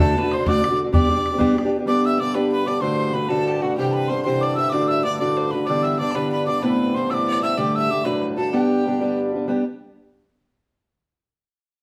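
Rollicking and lively, this Celtic jig in G major moves at 126 BPM in 6/8, cut from a longer piece and played live by a band in a stone room with wet reverb. A hollow wooden whistle with airy vibrato carries the melody over a nasal, earthy fiddle second line, while a boxy fingerpicked archtop guitar sits up front with audible finger squeak, and an open, boomy bodhran sounds close and dry from 0.3 to 1.6 seconds. At 1.9 seconds a reedy, full accordion drone enters beneath the whistle and fiddle, as the chords move through D, G, C and Amadd9 before landing on G.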